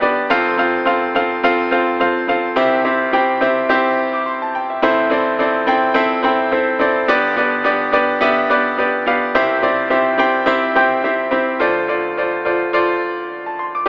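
Filtered through an AM-radio tone and a moderate plate reverb, this short pop fragment from a longer piece has an anthemic feel in C major at 106 BPM, with a light swing on the sixteenths. A bright concert grand piano plays solo from 0.0 to 13.9 s, brilliant and up front with a deep bass and short sustain, spanning F1 to D6 over a progression of F, C, Am, G and C. At 11.6 s it moves to a new passage on Dm7.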